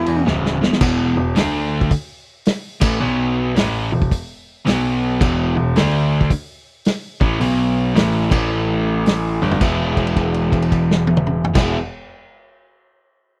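Dry, close 1970s-style studio sound frames this raunchy, swaggering blues rock and southern rock power-trio excerpt at 109 BPM, swung in 4/4 in E mixolydian, where a double-tracked, overdriven semi-hollow electric guitar drives the riff, a clear concert grand piano with deep bass, long sustain and audible action noise carries the low bass line, and a gritty, saturated vintage drum kit with dark cymbals and a tight kick kicks off with a fill at 0.3 seconds, the trio moving through a brief chord progression before settling on a held note over E from 9.6 seconds.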